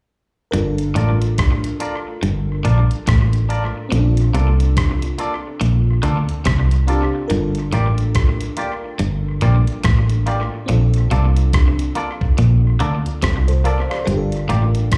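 A round, foam-muted fingered electric bass sits up front in this smooth, bittersweet lovers rock reggae groove, alongside a thumpy, sampler-style 8-bit drum machine with tape-echoed hi-hat, kick and rim click, a low twangy guitar riff with tape and slapback echo, clean picked guitar stabs with tremolo entering at 1.0 seconds, and a lush, dreamy FM electric piano with a soft pad and chorus alternating Gm7 and Bbmaj7, all heard as a live gig through the venue's PA with club reverb.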